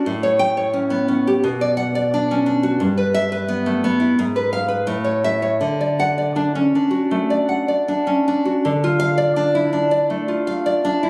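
A romantic piece for solo classical guitar, this short excerpt, cut from a longer work, moves with a tender, gently warm mood at a rubato pace around 78-90 BPM in 4/4, centred in D major. The nylon-string guitar carries everything alone from start to finish, fingerpicked across a range from G2 to G5, its tone bright and full-bodied with a deep classical character, sitting up front with audible finger squeak. The harmony travels through A7, Bm, Em/G and a colourful G#m6 before resolving through A to D at 5.6 seconds. At 8.6 seconds the music turns to a new section, shading the home key with a shift to Dm. The sound places the guitar in a moderate recital hall reverb, captured on a phone in the room with added studio reverb and compression.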